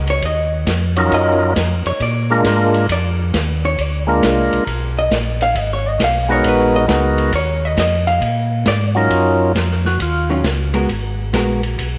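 A moderate echo-chamber reverb gives this short cut from a longer soul jazz organ trio a roomy, vintage glow, with a bluesy, soulful mood in Eb minor. The tempo is 135 BPM in 4/4 with a swung eighth-note feel. A mellow tonewheel organ carries the bass line, round and dark with vibrato, key click and a slow rotary speaker, sitting up front. A vintage acoustic kit plays hi-hat, kick, ride and snare in a small, natural room, with a punchy kick and a rolled-off top. The dark, compressed, picked hollow-body electric guitar takes a solo over changes such as Ebm9, Bb7 and Abm9 until 9.1 seconds. A percussive tonewheel organ, full and clean with second-harmonic percussion, key click and slow rotary, plays the melody from 1.0 seconds and takes over the solo spot for the closing seconds.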